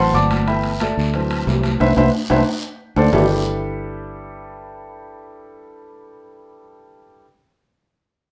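Light reverb surrounds this recording, with the grand piano and electric bass up front and the congas and timbales sitting further back. It is a danceable, sophisticated passage of Afro-Cuban jazz at 181 BPM in 4/4 with a straight feel, in G major, cut from a longer piece. The warm, natural grand piano plays the accompaniment and takes a solo at the start, moving through G69, D7 and Cmaj7. Beneath it, a round, dark, foam-muted fingered electric bass holds the low end. High-tuned, hard-handed congas ring in the background alongside a raspy guiro and metal-shell timbales that sound distant in a large room. A band accent lands at 1.8 seconds and a drum fill leads into the next section; the three percussion parts stop by 3.2 seconds, and piano and bass carry on together until 7.2 seconds.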